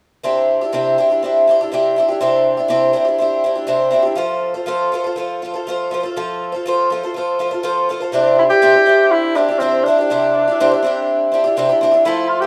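Heard through a rough home-demo mix with light small-room reverb, this jangly, warm rock fragment at 122 BPM in C major sets a shimmering, boxy, octave-doubled picked twelve-string acoustic guitar up front over Cadd9 and F. At 8.1 seconds, a distant, roomy tenor saxophone with vibrato and slapback echo joins it to carry a pop-style solo melody.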